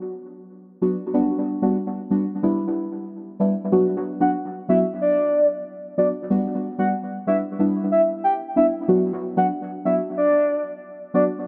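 An echo-heavy mix bathed in a moderate plate reverb carries this bouncy, tough dancehall excerpt at 93 BPM in B minor, where a deep, mellow, wave-folded chord stab with chorus, phaser and analog delay cycles through Bm, Gmaj7 and Em7 from 0.8 seconds, and a soft, round, octave-layered synth lead with vibrato and the same effects joins up front at 4.2 seconds to sing a dark, sustained melody.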